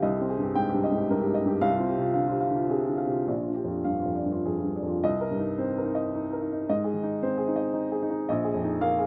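A clear, woody upright piano plays alone from the first moment, sitting up front in a light reverb with the rough, natural sound of a home demo. This reflective, melancholic neoclassical minimalist fragment moves in a rubato 3/4 at around 102-115 BPM in C minor, tuned to A4 = 439 Hz, and spans Bb1 to G5. Its harmony opens on Cm7, Fm/C and Bb7, then shifts at 5.0 seconds through Cm7 and Ab before coming to rest on Bb7sus4 as the 9.1-second excerpt ends.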